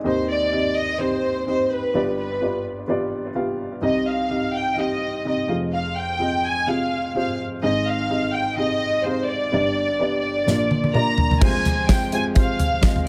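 A dark, mellow upright piano opens this bittersweet, earnest piano-driven pop excerpt in C minor, its short-sustained accompaniment trailing dub echo and sitting up front in an echo-heavy mix. A lush, bowed violin section carries the melody almost at once, its dark, woody ensemble tone shaded with vibrato and a sul tasto colour. At 127 BPM in 4/4 with a light swing, the harmony moves from Cm over Eb through G7, Cm, Fm, Ab and G before reaching Bb and then Fm. A polished acoustic drum kit of crash, hi-hat, kick, snare and toms enters at 10.5 seconds with a fill, bringing bright cymbals, a medium-tuned snare and a tight kick to the forefront as the music moves into a new section. A very quiet, jingly tambourine joins at 11.9 seconds, and the whole passage sits in a small room with moderate spring reverb before the cut.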